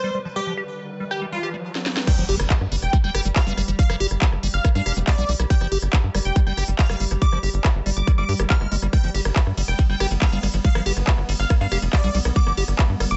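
A detuned supersaw stab melody with phaser and digital delay, a squelchy liquid acid bass riff under a filter sweep, and an evolving, warbling wavetable pad in the background open this alien psychedelic trance excerpt at 140 BPM, with a riser building to a drum fill at 1.8 seconds and a drop at 2.1 seconds, where an up-front layered kick, a cracking snare with smooth hats from the techno kit, a dark, saturated sequencer bass and, at 3.5 seconds, a very quiet wobbling formant-sweep bass join the sidechain-pumped mix.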